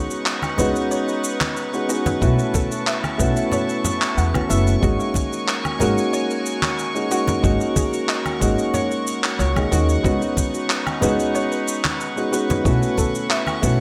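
A bright, 1980s-style digital sheen and a moderate plate reverb frame this wistful sunset chillout excerpt in G# minor, moving at an unhurried 92 BPM in a straight 4/4. A dark, mellow baby grand piano sits up front, its worn, intimate tone carrying audible action noise, 12-bit sampler grit and a digital delay, while a clear, floating studio string section holds soft-attack bowed chords tinged with the same grit. Underneath, a woody pizzicato upright bass with steel strings and tube saturation anchors the harmony, and a soft, round pluck adds gentle, decaying arpeggios in the background through subtle chorus and delay. Gritty, compressed sampler-style shaker, handclaps and woodblock with gated reverb start almost at once, ringing close and dry congas played with hard hands join at 0.4 seconds, and a thumpy electronic kick, re-recorded in a large room, enters at 2.2 seconds. The harmony drifts through suspended ninth chords, from C#9sus4 to B9sus4 and G#9sus4 before returning, giving the piece a hazy, longing glow.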